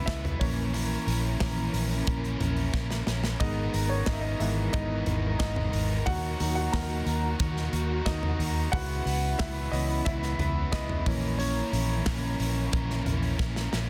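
Piano-driven pop at 90 BPM with an earnest, dramatic mood, led throughout by an intimate concert grand piano whose action noise and deep bass are audible, over a round, foam-muted fingered electric bass and a polished, punchy studio drum kit with handclaps and fills at 2.7 and 13.4 seconds, while a double-tracked overdriven electric guitar riff and soft, bowed sul tasto strings in the background move through A#dim, G#madd9, D#m and C#m7 in a dense, heavily limited mix with light small-room reverb.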